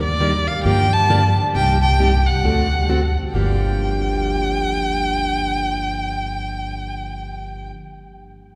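Swung eighths drive this fiery string swing excerpt in G minor at 134 BPM, with a woody, thumpy upright bass on gut strings plucking a dark foundation from the start. Up front, a single bowed violin sings the melody with expressive vibrato, portamento and a smooth top, while a boxy parlour-style steel-string acoustic guitar with fresh strings picks the accompaniment from 0.2 seconds through Ebmaj7, Gm7, Cm7 and D7 before settling back on Gm7 as the second section begins at 3.3 seconds. A wet cathedral reverb with a long 4.8-second tail gives the trio the spacious glow of a church or concert hall.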